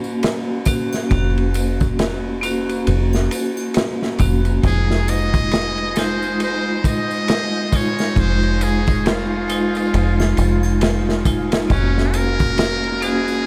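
Swung sixteenths at a slow 68 BPM anchor this brooding, cinematic trip hop excerpt in F phrygian, where a crunchy, saturated breakbeat kit with a punchy kick and dark cymbals sits up front beside a round, foam-muted dub bass holding F1, a ringing hard-mallet vibraphone shimmers through harmonic tremolo and tape echo over Gb/F and Fm7, tambourine and triangle murmur in the background, and from 4.7 s a buzzy, breathy muted trumpet takes a jazz-style solo with scooped notes, sampler grit and dub echo, all bathed in a huge, dreamy ambient reverb.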